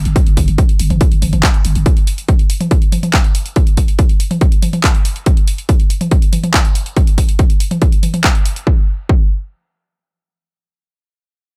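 A dry sound with little reverb frames this short cut from a longer piece of driving peak-time techno at 141 BPM in a straight 4/4, intense and dark in mood. A growling, buzzy 808-style bass opens the track on a low G1, its sine tone hitting with a fast attack and decaying under overdrive, sidechain pumping and a low-pass filter, before it stops at 1.9 seconds. The electronic kick drum sits up front as the loudest part, a heavy, layered and overdriven thump that carries on until 9.2 seconds. Around it, a layered, overdriven techno drum kit of handclaps, hi-hat and toms plays lower in the mix, with sidechain pumping on the hats and toms giving them a breathing motion. The kit drops out at 8.6 seconds, just as the piece moves into a new section where the kick carries on briefly by itself.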